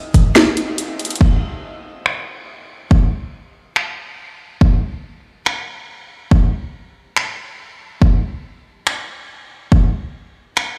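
A half-time 4/4 groove at 141 BPM drives this playful, euphoric future bass passage, cut from a longer piece, opening on a drop with a drum fill at 1.0 seconds. An overdriven, hard-clipped electronic kick sits up front from 0.1 to 9.8 seconds, alongside an overdriven trap kit of sharp snare, bright low-pass-filtered hi-hats, finger snaps and crash cymbal that enters at the same moment and carries on until 10.7 seconds. A large studio reverb gives the drums the sound of a big system playing in a bare room.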